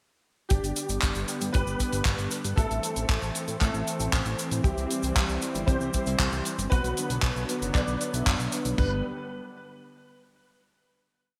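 A damped 70s drum kit drives this romantic, danceable italo disco piece at 116 BPM in G major, its tight four-on-the-floor kick, toms and crash sitting dry and mid-forward while a cabasa, handclaps and closed hi-hat add a gated-reverb disco machine beat. A fat, detuned analog bass runs sequenced sixteenth notes under a warbling vintage pad, and a clear concert grand piano carries a motif-based melody partly doubled in thirds, with ensemble chorus and delay. From 4.9 seconds, mellow synth brass adds dark, round off-beat stabs in the background before everything settles on a final G chord at 8.8 seconds, all framed by a lush hall reverb and bright 1980s-style digital production.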